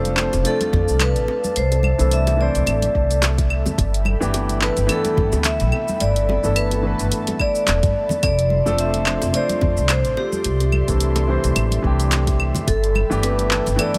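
A bright, ringing hard-mallet vibraphone carries the melody with delay over a dark, mellow grand piano and an airy, breathy chorused pad in this sunny, swung sunset chillout excerpt, anchored by a woody, up-front upright bass, with an overdriven R&B kit of claves, handclaps, hi-hat and shaker, background congas and bongos, and a soft, overdriven electronic kick that arrives at 0.7 s, all in a small, lightly reverberant room.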